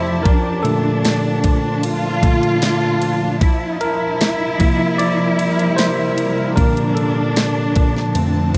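A bell-like tine electric piano opens this emotional pop ballad excerpt, taking the solo spotlight with a clean, up-front tone while a lush bowed cello section carries a second line and a shimmering ambient pad holds sustained chords beneath them. At 0.3 seconds an electronic pop drum kit enters with a knocking kick, a fat snare and ride cymbal, sitting prominently in the mix at an unhurried 76 BPM in a straight 4/4. The cellos bring a focused, symphonic richness with vibrato, their ensemble sound close and present. The pad, built from wave-folded triangle and sine waves, adds an ethereal octave-up shimmer with slow attack, long release, granular texture, chorus and its own reverb. The harmony moves gently from Bbmaj7 to C7sus4 and back, giving the short passage a heartfelt quality under a light overall reverb.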